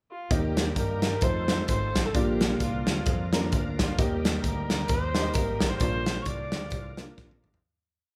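A single bowed viola with a nasal, reedy gut-string tone and light vibrato opens this short, reverent and soulful uptempo gospel piece with a pickup, singing hook phrases as a punchy, up-front acoustic drum kit enters at 0.3 s with a swung, driving two-beat praise groove, joined by a growly fingered electric bass walking and running through slides and chromatic approach notes, a mellow, intimate baby grand pushing chords in drop2 voicings with grace notes, and a shouting, lightly overdriven tonewheel organ sustaining a background pad through fast rotary speaker and chorus vibrato, all of it played live in one room under a moderate large-studio reverb before fading out from 5.8 s into a closing drum fill at 7.2 s.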